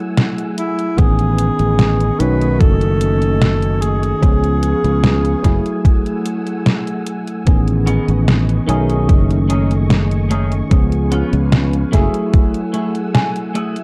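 A straight 4/4 pulse at 74 BPM comes from a detuned 8-bit drum machine playing overdriven hi-hat and fat snare, joined by a thumpy, overdriven electronic kick, setting this woozy, faded vaporwave piece in motion. A growly, punchy fretless bass sits up front under chords that cycle through F#m9, Amaj9#11, B13 and C#7, while a bell-like tine electric piano with chorus and delay and a silky, warbling string machine with vintage sampler grit hold the harmony. A breathy, whispered alto saxophone with tape echo carries the melody from 0.6 to 6.2 s, then a twangy, picked clean electric guitar riff enters at 7.9 s and closes with a fill at 12.7 s, the mix sitting in light reverb with a dark cassette-tape sheen.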